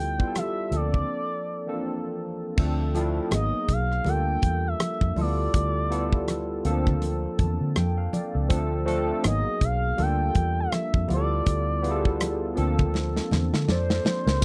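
A nasal, sawtooth-edged synth lead with vibrato carries the melody up front through this cinematic, smooth slice of lush 1970s-style soul, its chorus-treated tone sustained over a barky, lightly overdriven tine electric piano playing rich extended chords like G13/D, C13sus4/D and G#m9. A dark, foam-muted fingered bass sits round and close beneath a tight acoustic kit of kick, snare, rim click, hi-hat and crash, which enters at 0.2 seconds, while damped, thick-skinned congas stay in the background with a swung sixteenth-note feel. After a break from 1.1 to 2.6 seconds, the groove settles in, and a drum fill from 12.9 seconds closes this dry, close-miked studio recording.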